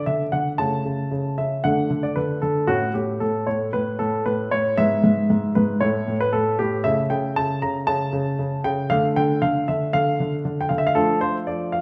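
A serious, elegant classical-period piano sonatina excerpt at 116 BPM in 4/4 with a rubato feel, played by a solo baby grand piano that sounds warm, present and up front with short sustain across a range from G#2 to Bb5, moving through A/C#, A and E/G# harmonies before settling into D minor at 6.8 s and reaching Dm/F at 11.0 s, heard in a wet recital hall reverb with a 1.3 s decay.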